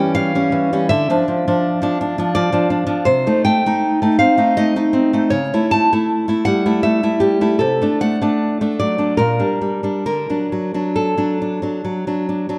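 Wistful and intimate, this romantic piece for solo classical guitar unfolds in D minor and 3/4 time, moving with a rubato feel that drifts between 66 and 87 BPM. The fingerpicked nylon-string guitar sits up front with a fresh-stringed, warm tone, ranging from Bb2 to A5 as its harmony passes through Dm, A7/C# and D7/C before arriving on D at 10.1 seconds. A moderate concert hall reverb surrounds it in a dark production, and the excerpt is cut from a longer piece.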